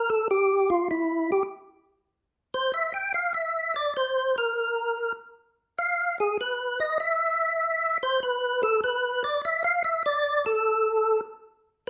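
Swung eighth notes in 4/4 drive this short, bluesy jazz passage, carried entirely by a percussive tonewheel organ playing alone from 0.0 to 11.9 seconds in a swinging, up-front solo that sits between E4 and G5. The organ sounds fat and lightly overdriven, with key click, third-harmonic percussion, chorus vibrato and the churn of a slow rotary speaker. A moderate large-studio reverb gives the sound some space around it.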